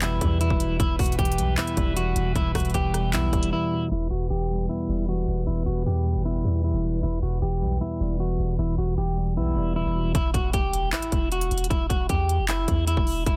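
Hard-hitting and melancholic, this half-time trap excerpt at 154 BPM in E minor rests on a deep, sine-toned 808 bass and a mellow tine electric piano with lush chorus, while a dark, slightly broken-up electric guitar carries the melody up front through digital delay and a muted, nasal French horn section holds sustained chords in the distance; the trap kit, with its hard-clipped kick, crisp hi-hats, handclaps and rim clicks, drops out at 3.5 seconds for a break and a filter sweep, then returns at 10.1 seconds alongside a very quiet electronic impact, the whole piece set in digital ambience under a dense, heavily limited master.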